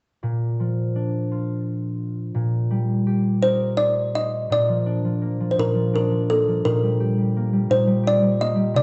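A mellow, ringing concert harp opens this gentle, sleepy children's lullaby in Bb major at 0.2 s with thumb-plucked accompaniment in a rubato 6/8 at 56 BPM, and at 3.4 s a woody, airy kalimba joins up front with short thumb-plucked melody notes, both parts carrying on to the cut at 8.8 s inside a dark production and the moderate reverb of a scoring stage.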